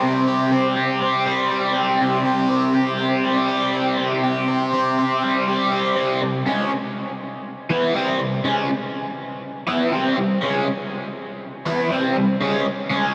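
A raw, bright electric garage guitar, overdriven, picked and double-tracked up front through phaser and a diffuse ambient delay, carries this dark, mysterious rock fragment at 121 BPM in a straight 4/4, moving from a C5 power chord to a full C chord at 6.0 seconds inside a dreamy mix soaked in huge ambient reverb.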